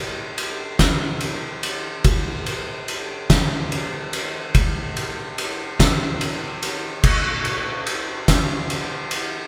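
Recorded live in a bright stone room with light reverb, this cinematic, melancholic rock fragment, cut from a longer piece, is a 6/8 build-up at 48 BPM (dotted quarters) carried solely by an oversized, low-tuned acoustic drum kit that sits up front from 0.4 to 9.3 seconds, its punchy kick, fat snare, dark crash and ride cymbals, and saturated, gritty tone set in a pumping room sound.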